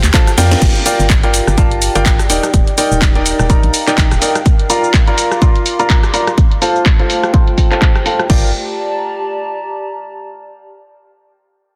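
A faint, shimmering string-machine chord opens this soulful, energetic piano house cut at 125 BPM in G minor. It sits over a hollow, organ-like FM bass with tube saturation and sidechain pumping, and a tape-warm, layered house kit with a cracking snare, claps, hats, ride, rim click, shaker and crashes, whose hats, percussion, cymbals, snare and room sound are low-passed, joined by a louder second kit layer with a punchy kick and crashes; a drum fill and band accent mark the turn into the main part. The strings stop at 0.6 s as a warbling, detuned lo-fi pad with chorus slips in behind a woody, up-front upright piano riff with audible action noise, filter sweep and dub echo over a swung Gm7, Ebmaj7, Bb, F/A progression. The drums fall away around 8.3 s, piano and a brief return of bass ring out by 8.5 s, and the pad settles on Gm through 10.2 s, framed by light digital reverb and a dense, heavily limited master.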